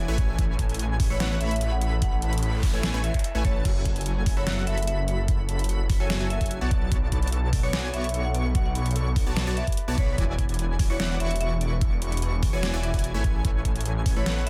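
A knocking, tape-warm electronic kick sits up front from 0.2 s in this dreamy, emotional future bass passage at 147 BPM in a half-time feel, landing on a thick, saturated detuned saw bass with chorus that plays from the very start, alongside an overdriven dubstep kit with a deep snare, hi-hat and crash. Punchy supersaw stabs carry the riff over an Amaj7, F#m7, Bm7, E7 progression, while a woody, vintage marimba melody with tape echo, airy chorused lead arpeggios with vibrato, and ringing fingerpicked harp arpeggios with dub echo sit in the background, all pumping against the sidechain. A brief noise sweep passes from 2.4 to 3.7 s in this dense, heavily limited and dry mix.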